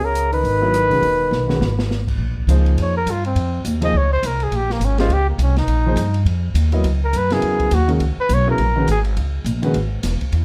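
A mellow, punchy trumpet with scooped notes carries the melody and takes a solo from 2.2 s in this cool, hypnotic modal jazz excerpt at 206 BPM in swung 4/4, joined at the outset by a breathy subtone tenor saxophone second line that stops at 1.9 s, while a woody, thumpy upright bass sits up front, a concert grand piano with deep bass plays the accompaniment, and an open jazz drum kit with dark cymbals and a boomy kick adds a fill at 1.3 s, all in a dark production with light reverb.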